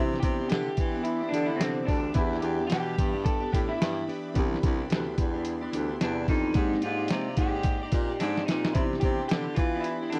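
A sunny, dreamy slice of indie bedroom pop at 109 BPM in C major, opening on a twangy, chorus-drenched clean guitar with a warbly pitch drift, a very quiet, worn reed electric piano, a warm string-machine viola pad with phaser and ensemble chorus, and a smooth, soft-attack baritone saxophone carrying the bass line up front. A muffled, thumpy sampler-style drum kit with a swung sixteenth feel joins almost at once, and a slightly broken-up electric guitar through a small old amp takes the melody from 0.2 seconds. Over chords drifting from Cmaj9 through Em7 to a colourful Abmaj9#11, a drum fill lands at 8.2 seconds, all captured in a dry, close 1970s-style studio sound.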